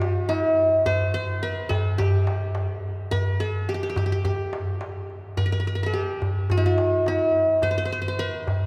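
A plucked qanun and a darbuka open together, playing an Arabic maqam piece in G maqam huzam at a stately, festive 106 BPM in a straight 4/4, cut from a longer performance. The qanun carries the melody up front, its triple strings plucked with a plectrum to give a bright-edged tone that moves between E4-50c and C5-40c, with the whole ensemble tuned to A4 = 441 Hz. Alongside it, the metal-shelled darbuka sounds large, deep and crisp under hard hands, with a vintage, band-limited character that sits equally close to the listener. The passage states its opening section and then repeats it from 5.4 seconds, both instruments carrying through to the end of the roughly nine-second clip. A cathedral-like reverb with a long five-second tail surrounds the pair, placing them in the resonant space of a church or concert hall.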